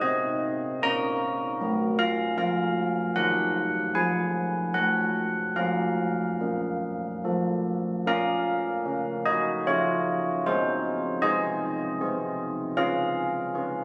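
Solo carillon bells open this solemn, wintry classical tune in 3/4, their bronze, mellow tone with a minor-third overtone and a padded clapper sitting up front in a wet church reverb caught on a phone in the room, before a second section begins at 8.1 seconds in this short cut from a longer piece.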